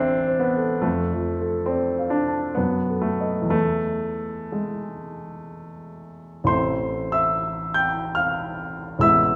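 A warm grand piano carries this mournful, wistful romantic nocturne alone, moving through a triple metre with rubato and ranging from the deep bass to the high treble. Its harmony passes from A minor through D minor over F, B7 over F sharp and E before settling back on A minor at 6.5 s, where a new section begins. The piano sits up front, yet a lush recital-hall reverb places the listener further back in the room in this brief passage cut from a longer piece.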